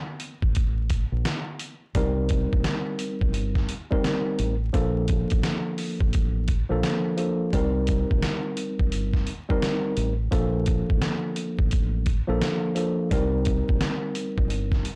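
Reflective and gritty, this boom-bap hip-hop excerpt at 86 BPM in C dorian swings over a pitched-down, thumpy sampler-style drum kit of kick, snare and hi-hat from 0.2 seconds, a dark, round fingered electric bass with tube saturation from 0.4 seconds, and a worn, slightly out-of-tune tine electric piano entering at 1.9 seconds with cassette-tape colour and plate reverb on Cm7 and Bbmaj7, all within a blown-out, overdriven recording dusted with vinyl crackle.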